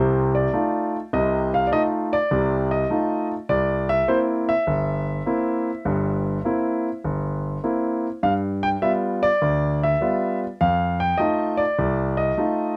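A medium swing at 101 BPM in 4/4 drives this solo jazz excerpt, its eighth notes moving with a relaxed, loping lilt. A single concert grand piano carries everything, reaching from deep bass at G1 up to G5 in C mixolydian. Its tone is clear and intimate, with long sustain and audible action noise placing the listener close to the instrument. The harmony moves through F7, C7, G7 and back to F7, giving the short passage a warm, swinging feel. A moderate studio reverb surrounds the up-front piano, though the overall mix keeps the rough, unvarnished character of a home demo. The recording is a brief cut of about 12.8 seconds lifted from a longer performance.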